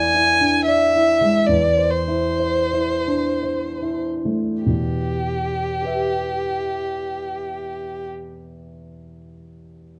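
A bowed solo violin and an up-front concert grand piano with deep bass open together in this yearning, melancholic romantic classical piece in E minor and 3/4, its rubato tempo moving between 46 and 77 BPM and slowing through the first 4.7 seconds as the harmony passes from E7 to Am/E before settling on Em, the up-front violin singing an expressive melody with vibrato, portamento and a soft attack over the warm piano accompaniment, which carries on alone after the violin stops at 8.1 seconds, within a moderate large-studio reverb.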